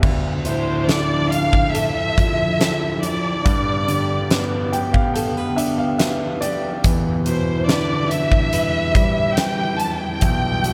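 An echo-heavy mix with light small-room ambience frames this tender, heartfelt pop ballad at 71 BPM, where a huge arena drum kit with a punchy kick, fat snare and bright cymbals sits up front beside a lush, biting violin section that carries the melody from 0.5 s, while an intimate grand piano with audible action noise accompanies and adds a fill at 4.3 s, the violins and piano both colored by tape echo, as a full-bodied, fingerpicked jumbo acoustic guitar plays arpeggios in the background and a glassy, ethereal FM pad with ensemble chorus holds slow-attack chords through Dmadd9, G and Em7.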